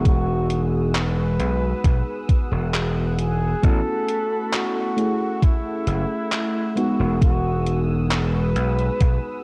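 A faded cassette-tape sound with little reverb frames this short, nostalgic vaporwave fragment, cut from a longer piece and moving at a slow 67 BPM in straight 4/4 time in E major. A mellow, distant flugelhorn carries the melody between E4 and B4 with vibrato and a soft attack, trailed by tape echo. Beneath it, a round, dark FM electric piano with a subtle chorus plays the accompaniment, while a lush, thick unison pad with a slow attack holds sustained chords that shimmer through its chorus. A gritty, overdriven slap bass sits up front in the low register, punchy and bright, and a thumpy electronic kick anchors the groove alongside detuned 8-bit handclaps and hi-hat bathed in gated reverb. The harmony drifts from Emaj9 to A69 at 3.6 seconds, then F#m7, before settling back on Emaj9.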